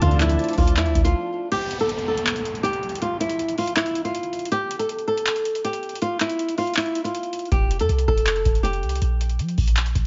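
A booming analog drum machine drives a half-time trap beat at 160 BPM in 4/4, its deep kick, metallic hi-hats and handclaps tape-tinged and up front, while a clean, sine-like 808 bass with a fast attack and dark decay thumps through the opening and returns at 7.5 s. Over it, an up-front flamenco guitar carries a fingerpicked melody in F major, its finger squeak audible through a low-pass filter and digital delay, until 9.0 s. For the first 1.5 s, a dark, boxy grand piano with audible action noise and a detuned sawtooth pad with chorus sit in the background. An electronic downlifter then sounds from 1.5 to 4.5 s during the break in this triumphant, dreamy hip hop passage cut from a longer piece.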